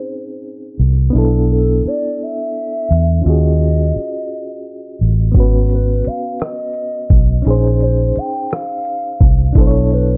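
Slow six-eight R&B with a sultry, yearning mood, this short excerpt opens with a gliding portamento lead carrying the melody, its smooth, mellow tone touched with chorus and vibrato. Beneath it, a bright, reedy electric piano supplies clean chordal accompaniment with a fast tremolo, moving through lush minor colours from A#m11 to Bm7, D#m11 and G#m7. At 0.8 seconds a vintage muted fingered electric bass arrives, its dark, round, foam-muted tone sitting punchy and up front. A dusty soul sampler-style drum kit joins at 5.3 seconds with hi-hat, rim click and a thumpy kick, sounding gritty and compressed. A digital ambience wraps the mix, and a low-pass filter sweep runs through the whole passage, giving the sound a hazy, late-night character.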